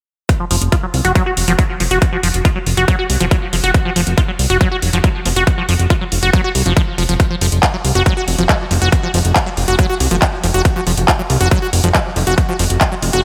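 A straight pulse from a punchy, overdriven electronic kick and a techno kit of handclaps and metallic hi-hats drives this intense, hypnotic psychedelic trance cut, as a squelchy, resonant acid bass riff with chorus, tape echo and sidechain pumping coils over a fat, detuned analog bass line, all bathed in a dreamy cathedral reverb.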